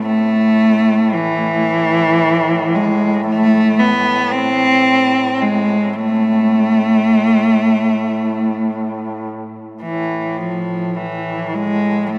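From the first moment, a rich, bowed cello played by a single player sings a longing, mournful melody up front, full of expressive vibrato and portamento, over a warm, vintage-toned duduk drone with its own vibrato and scooped notes, in a rubato Caucasian folk lament in three with uneven beats, bathed in a long, wet cathedral reverb across this 12.2-second excerpt from a longer piece.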